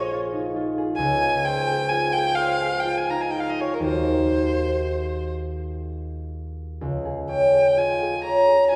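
A single bowed violin carries the melody, its tone focused and vibrato-rich with a smooth top, sitting up front as it moves between Bb4 and Bb5. Beneath it, a concert harp supplies fingerpicked accompaniment that rings out mellow and acoustic, spanning from a deep Bb1 up to Db5. This is a wistful, hazy impressionist classical duo in 6/8, drifting in rubato at roughly 39 to 46 dotted-quarter beats per minute and tuned to A4 = 444 Hz. The harmony glides from Bb9sus4 to Dbmaj9, then to Ebm6 at 3.9 seconds and Dbadd9 at 6.8 seconds. A wet concert hall reverb with a 2.2-second decay surrounds the pair, heard from further back in the room, giving this 8.8-second fragment of a longer piece a soft, suspended glow.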